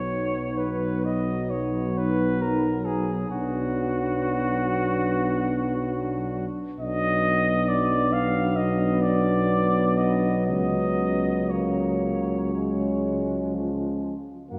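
A warm flugelhorn with light vibrato carries the melody up front in this tender, serene hymn-like classical piece for brass band, moving in a rubato 4/4 at around 57-71 BPM. Beneath it, a dark, distant French horn section sings a soft-edged second line, two clear euphoniums with light vibrato fill in the accompaniment, and a dark, smooth tuba anchors the bass up front. The brief passage, cut from a longer work, sits in a wet concert hall reverb, with the harmony settling on B and moving to F#/C# at 10.5 s and C# at 12.5 s.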